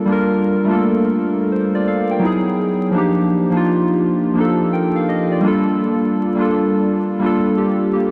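Warbly lo-fi synth keys open this brief hip hop fragment and carry it alone from 0.0 to 8.1 seconds, sitting up front in the mix with a reflective, nostalgic mood and a relaxed swung 4/4 feel. Their detuned square and sawtooth tones have a fast attack and a decaying, mellow tail, coloured by chorus, cassette tape wobble, a low-pass filter with a filter sweep, and an analog delay that lends a vintage character. The harmony drifts through Gm9, Emaj9 and Ebmaj9 before settling back on Gm9 at 5.4 seconds. A moderate plate reverb gives the keys a lingering space, and vinyl crackle adds dusty texture to a dark, warm production. Cut from a longer piece, it plays as a single hazy, wistful passage.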